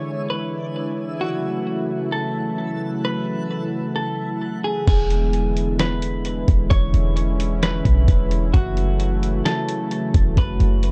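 An ethereal, melancholic cloud-rap excerpt at 131 BPM in a half-time feel opens with a clean, picked semi-hollow guitar melody through digital delay over a smooth, detuned sawtooth pad with chorus and sidechain pumping, while a reversed, granular, bright texture swells in the background until 4.8 seconds, after which a deep, boomy sine 808 bass and a muffled, pitched-down sampler-style drum kit with a thumpy kick join at 4.9 seconds, all moving between E7 and F#m7 in a dark, dry mix.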